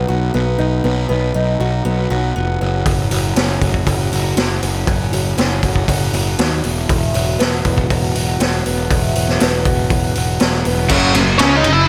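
In straight 4/4 at 119 BPM, this brooding, angsty quiet-loud alternative rock fragment opens with a boxy old ladder-braced acoustic guitar picking slapback-echoed arpeggios over a round, up-front fuzz bass through B, F#5 and Esus2, a gritty garage drum kit with a high-tuned snare and boomy kick joins at 2.9 s, and at 10.9 s the music moves into riffs from a very quiet biting overdriven guitar, a bright double-tracked high-gain distorted guitar and a raw overdriven guitar sitting in the background, before a dark octave-fuzz lead with slapback echo enters up front at 11.4 s, all within a small room ambience.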